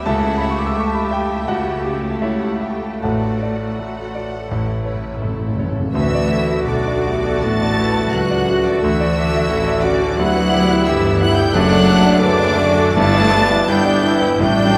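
A clear, up-front concert grand piano carries the melody through this passionate, lyrical passage from a romantic movement for piano and orchestra, its deep bass ringing beneath a rubato line in 4/4. Lush violins sing the melody high and distant above it, while a second violin line, violas, cellos and double basses fill in a rich, smooth, bowed bed in the background. Soft-malleted timpani with round calf heads add a fill from 4.5 to 5.9 seconds, and at 5.9 seconds the brass enters as the music moves to a new section, with the woodwinds following at 6.0 seconds. Dark, roomy French horns and tight trombones hold very quiet sustained chords, a brilliant trumpet adds stabs, and a distant tuba reinforces the bass. An airy flute group and a soft-toned clarinet trace second lines, with a very quiet bassoon in the accompaniment, all set in a moderate scoring-stage reverb.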